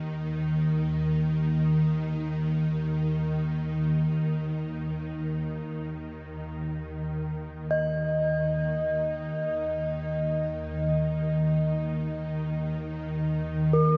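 Floating in free time with an unmeasured pulse, this short excerpt of world meditation music feels haunting and spacious from its first moment. An ethereal, airy pad holds a low drone between Eb2 and Eb3, its detuned layers and sub octave given a slow attack, long release and ensemble chorus that keep it mellow and up front. At 7.7 s a bronze singing bowl enters higher, between Bb4 and Eb5, struck with a wooden striker; its metallic ring carries a slow beating and a boxy small-room quality, further haloed by shimmer reverb. The two halves present the same material, the second deepened by the bowl's arrival. A huge ambient reverb with an 8.4 s decay soaks the dreamy mix, and the top end is rolled off above 7.7 kHz, leaving a soft, darkened glow.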